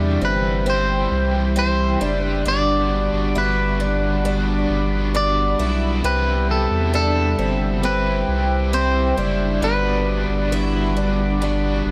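Ethereal and floating, this dream pop passage, cut from a longer piece, drifts at 67 BPM in C lydian, moving between Cmaj7 and Gmaj7 with all five parts sounding throughout. A slightly broken-up, twangy electric guitar carries the melody through tape echo, while a bright overdriven electric guitar adds accompaniment treated with tremolo and analog chorus. A mellow, flute-like tonewheel organ holds chords through a slow rotary speaker with audible key click, a boxy, shimmering twelve-string acoustic picks octave-doubled arpeggios, and a thick, saturated sub bass sits up front beneath a dark mix of light reverb and digital ambience.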